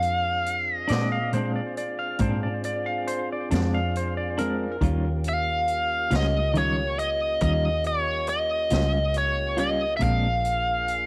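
A swaggering, laid-back slow blues in 12/8 opens with a biting, overdriven lead guitar carrying the melody up front. Beneath it sit a tonewheel organ holding sustained chords through a slow rotary speaker with light overdrive and key click, a dark, round, foam-muted fingered electric bass, and a swinging big-band drum kit with a punchy kick and a medium-tuned snare. At 0.9 seconds, a clean, picked electric guitar with tremolo adds compressed accompaniment, while a bright, twangy lap steel played with a slide traces a second line through tape echo until 5.0 seconds. The harmony moves from Bb9 to Eb9 and returns to Bb9 near the end, all at an unhurried 46 beats per minute. Light reverb and a natural studio ambience give this cut from a longer piece a relaxed studio feel.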